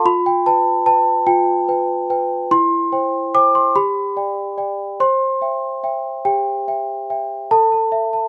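A solo celesta, bell-like and delicate with medium felt hammers, close-miked, dry and up front, sings an innocent, tender classical lullaby in C major at 48 BPM in a straight 6/8, tuned to A4 = 445 Hz, moving from G7/F through C/E, G and C before turning to A5 as the clip, cut from a longer piece, ends at 8.3 seconds.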